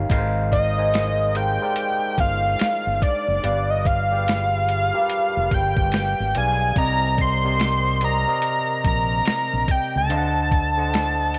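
A barky, overdriven tine electric piano through a phaser and a round, punchy fretless bass with lush chorus open this sensual, warm neo-soul R&B excerpt at a swung 72 BPM, joined at 0.1 s by a compressed, pitched-down boom bap sampler kit with a thumpy kick, high-tuned snare and hi-hat, and at 0.5 s by a fat, nasal, up-front analog lead of detuned sawtooth with sub octave, ring modulation, filter sweep and vibrato, all moving through Ab69, G7, Cm9 and D7b9 in light reverb.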